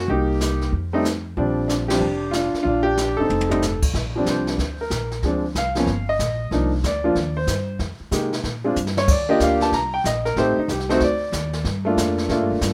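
A warm, up-front grand piano and a woody, growly upright bass open this swinging, relaxed jazz trio passage, with a brushed drum kit joining a moment later. The piano carries the melody with a smooth, vintage tone, while the pizzicato bass supplies a thumpy low end on steel strings. The drums sit further back, with dark cymbals, a medium-tuned snare and a boomy kick played with brushes. The trio hits a shared accent at 1.9 seconds, and a short drum fill at 3.3 seconds leads into a piano solo that runs from 3.9 seconds to the end, with a second fill along the way. The harmony moves through rich jazz chords such as minor elevenths and half-diminished sevenths, all heard in a small, moderately reverberant room with a rough, homespun demo mix.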